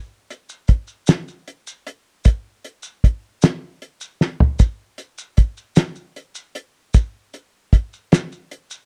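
Hazy and hypnotic, this short rock excerpt in a straight 6/8 sets a cloth-damped, thuddy drum kit up front, its fat snare, tight kick, toms and hi-hat sounding dark with a rolled-off top, over faint grainy maracas, with a brief drum fill at 4.2 seconds, all captured in a dry, close 1970s-style studio sound.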